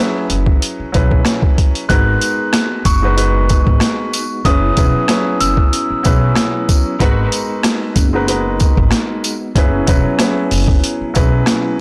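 A dark, mellow baby grand piano with audible action noise opens this tough, gritty, swung boom-bap hip-hop excerpt, soon joined by a woody pizzicato upright bass and an up-front, pitched-down sampler-style drum kit with a thumpy kick and high-tuned snare; from 1.9 seconds a bell-like glockenspiel played with rubber mallets carries a brief tape-echoed melody over a soft, flute-like tonewheel organ through a slow rotary speaker, while a jingly tambourine sits in the background and a lush bowed string section adds brief stabs at 7.0 seconds, the whole mix blown-out and overdriven.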